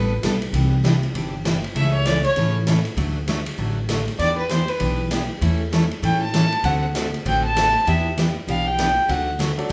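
Western swing country with a playful, swinging lilt: a clear, earthy bowed fiddle with light vibrato solos over a bright, full-bodied picked acoustic guitar with finger squeak, a woody pizzicato upright bass and a natural big-room drum kit on hi-hat, ride and snare that joins at 0.2 s, while a brilliant upright piano slips in only at 9.6 s, the band playing live together in one room with a moderate studio reverb.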